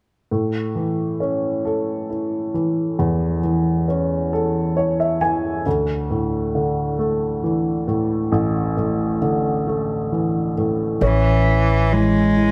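Pop in 6/8, romantic and tender, cut from a longer piece: a woody, slightly detuned vintage upright piano plays alone with a brief fill at 4.3 s, until at 11.0 s a rich, nasal bowed cello with light vibrato takes the melody over a dark, growly pizzicato upright bass, the whole set up front in a moderate echo-chamber reverb.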